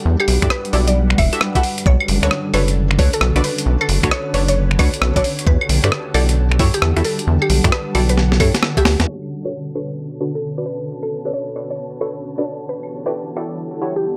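Bouncy and moody, this two-step UK garage excerpt in B minor swings at 133 BPM, with an overdriven knocking kick and a gritty, tape-warm sampler-style kit of snare, hi-hat, rim click, claves and finger snaps alongside a rubbery, wave-folded square bass until the kick and bass drop out around a drum fill from 8.2 to 9.1 seconds, while woody FM mallet plucks, punchy warbling sawtooth chord stabs, an airy breathy pad and an evolving granular cloud pad carry Em11 and Bm9 chords through a low-pass filter sweep to the end.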